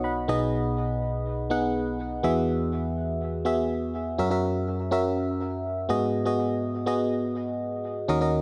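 In a straight 4/4 at 123 BPM, this nostalgic yet urgent pop excerpt in G# minor, tuned to A4 = 438 Hz, features a solo FM electric piano spanning B1 to B5: glassy and bell-like with a fast, decaying attack, a noise layer and a warbling vintage character, it sits up front with chorus and tape echo in light reverb as the harmony moves from G#m/B and Eadd9 to F#7 and G#m7 after 4.2 seconds.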